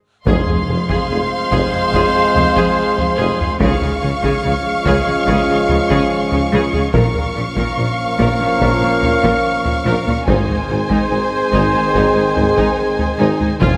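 Drenched in a wet concert-hall reverb, this excerpt from a longer cinematic orchestral score feels relentless and heroic, with taiko drums struck with hard sticks driving it from 0.3 s while timpani sound only briefly at the start and again at 13.6 s. A lush, expressive violin melody with a soft attack and vibrato rides above a focused second violin line and intense violas, while a trumpet adds warm stabs and dark French horns and tight trombones hold sustained chords in the background. Below them, smooth cellos, woody double basses and a distant, mellow tuba carry the bass through an Fm, Db, Bbm and Ab progression.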